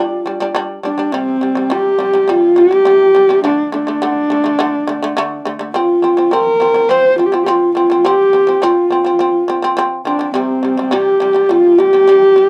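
Dry and close with a light reverb and a 1970s studio feel, this galloping, proud piece of Mongolian folk music moves at 104 BPM in a straight 4/4 in F zhi mode, with a husky, woody horsehead fiddle carrying the melody up front with light vibrato and portamento while a buzzing, percussive, plectrum-plucked fretless shamisen plays arpeggios beneath it throughout.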